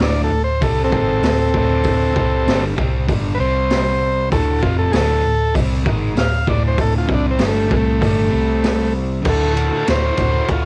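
Swaggering and raw, this short cut from a longer garage rock piece struts along at 97 BPM in a straight 4/4, recorded at home on cassette with light reverb and a small room ambience. An overdriven combo organ carries the melody up front, its vintage, buzzy tone ranging from G#3 to F5 with a cassette tape grit, and at 9.3 seconds it breaks into a transistor organ solo that runs to the end. Beneath it, a crunchy, double-tracked electric guitar plays a picked, overdriven riff, while a hollow-body short-scale bass adds a dark, round, amped low end through its own overdrive. The raw drum kit sounds acoustic and saturated, with a high-tuned snare, boomy kick, hi-hat, ride and crash cymbals, all mid-forward with a rolled-off top. The harmony rests mostly on D with brief moves to C, giving the groove a stubborn, rough-edged drive.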